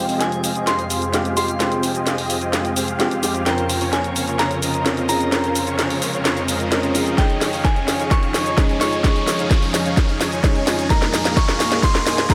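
A dense, compressed supersaw riff runs through this build-up from a festival progressive house track, its huge detuned sawtooth body roughened by vintage 12-bit sampler grit, pumping against the sidechain as a filter sweep runs across it. The music sits in F minor at 129 BPM in a straight 4/4, anthemic and emotional, moving through Fmadd9, Bbmadd9/F, Dbsus2/F and Absus2/F. Above it a glassy FM synth bell carries a high, crystalline melody that warbles with chorus, tremolo and digital delay, while a felt-muted upright piano adds soft, intimate accompaniment in the background. A lush unison pad holds bright sustained chords, shimmering with chorus and phaser and breathing with the same sidechain pumping. A house drum kit with a cracking snare, hi-hat and shaker drives a continuous drum fill from the start, a riser climbs in the background from 3.8 seconds, and a punchy, overdriven electronic kick lands up front at 7.2 seconds, all set in light reverb in this excerpt cut from a longer piece.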